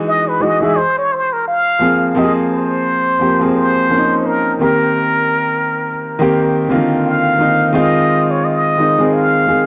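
Soulful, relaxed R&B with a swung sixteenth-note feel, cut from a longer piece and captured as a home recording on cassette, with a moderate spring reverb. An intimate concert grand piano, up front with deep bass and audible action noise, carries the accompaniment under chords such as Emaj9, Ab69, Cm7 and Fm7. A plunger-muted trumpet sings the melody in a jazz style, with wah-wah colour, vibrato and a smooth top, taking a solo over the first 2.1 seconds before the second section begins.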